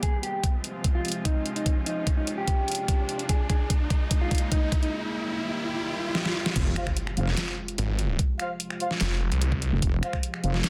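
A heavy, resonant wobble bass slams in at the drop at 6.6 seconds of this menacing, chaotic half-time dubstep cut in F minor at 147 BPM, joined by a growling distorted saw bass and mellow classical-style brass stabs with digital delay, after a build-up in which a dark, clean electric guitar melody with delay and a filter sweep floats over a morphing, warbling wavetable pad with sidechain pumping, a knocking, up-front kick, an overdriven kit of deep snare, hi-hat, handclaps, finger snaps and crash with fills, and an electronic riser that lands on an impact, all in a dense, heavily limited modern mix with light reverb.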